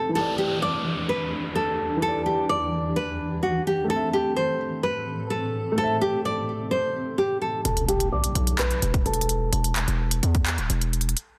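Hip hop trap in E minor at 128 BPM with a half-time feel, this eerie, melancholic excerpt opens on a fingerpicked nylon-string guitar melody, full-bodied with audible finger squeak and treated with a low-pass filter and delay, over a dark, mellow concert grand piano and a cloudy, blurred granular pad moving from Em7 to Am, while an electronic downlifter sweeps underneath. At 7.7 seconds an impact lands on an E5 chord as the piano and pad drop away, and a heavy, aggressive distorted 808-style bass enters with a trap drum kit of hard-clipped kick, crisp hi-hats and handclaps, all under a filter sweep. The sound is dense and heavily limited, with light reverb and digital ambience.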